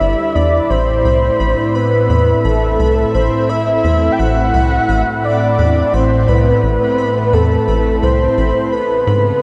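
A vast, washing reverb and the warble of worn cassette tape, with its drifting pitch, surround this hypnotic, cosmic slice of sequencer-driven space music, cut from a longer piece and moving at 86 BPM in a straight 4/4 in A dorian. A tight, punchy sequencer bass drives a sawtooth-and-square riff, each filter-plucked note striking fast and decaying. Above it, a phased analog pad holds swirling, detuned chords that evolve slowly under chorus. Up front, a breathy, flute-like synth lead sings the melody with soft attacks and vibrato, its tone thickened by a sub octave and carried by chorus, shimmer reverb and delay. Lower in the mix, a pulsing, tempo-synced gated texture glints on a single bright high note, bathed in chorus and shimmer reverb. The harmony rests on A minor until a C#7 voicing that omits the third arrives at 8.7 seconds.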